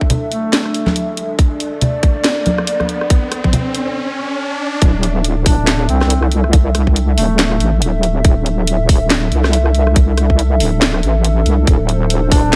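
Wobble bass, square-wave and detuned with chorus, crashes in up front at the drop at 4.8 seconds in this brooding, heavy deep dubstep excerpt at 140 BPM with a half-time, swung feel, landing after a build-up where a dark, ring-modulated analog pad, a tight electronic kick, a garage kit with cracking snare, handclaps, hi-hat and rim click, bright hard-handed congas and an electronic riser gather beneath a brief phrase of a mellow, vibrato-laden duduk soaked in dub echo.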